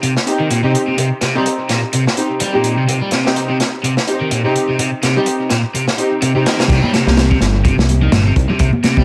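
An echo-heavy breakbeat cut with light small-room reverb swaggers along at 126 BPM in C minor, where a bright, double-tracked overdriven guitar riff and a gritty, saturated drum kit with a tight kick and dark cymbals drive forward alongside dark, bowed sul tasto string stabs, until a drop at 6.7 seconds brings in a fat, detuned sawtooth bass up front and ringing congas in the background.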